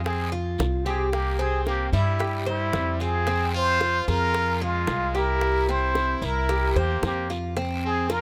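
Close, detailed microphones and light reverb frame this nostalgic, sultry Cuban son and guajira passage in a straight 4/4, cut from a longer piece. Up front, a plunger-muted trumpet carries the melody with a breathy, wah-wah jazz tone, soft attack and vibrato, while a brilliant, punchy second trumpet adds a forceful pop-style line with scooped notes. A metallic tres picks arpeggios on its double strings over a woody, thumpy pizzicato upright bass, with tight, high-tuned bongos entering at 0.1 s and a raspy guiro sitting in the background.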